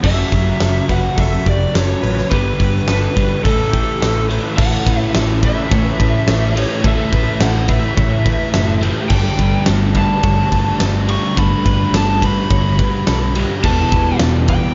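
Hazy and blissful, this shoegaze and dream pop rock excerpt moves at 106 BPM in A mixolydian, its dark production pairing light reverb with small room ambience as chords drift from F#m7 through G, Aadd9 and Gsus2 to Em. An overdriven lead guitar through a small cranked amp carries the melody up to C#6 with slapback echo, while a compressed, direct-recorded clean guitar plays chorused arpeggios and three picked overdriven and fuzz guitars layer riffs in the background, one with reverse reverb and another double-tracked. A round, hollow-body short-scale bass underpins a huge arena kit whose fat snare and punchy kick sit up front, with a shift into the second section at 4.6 seconds.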